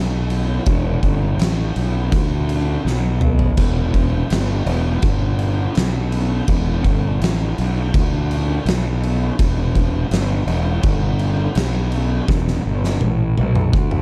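Hypnotic and sludgy, this stoner and doom metal cut from a longer piece crawls along at 83 BPM in E minor, with a round, fuzz-drenched electric bass grinding low and up front while an oversized, low-tuned acoustic drum kit with a punchy kick, fat snare, shadowy cymbals and a gritty, pumping stone-room sound breaks into fills at 2.9 seconds and 12.3 seconds, all captured in a dark, dry production.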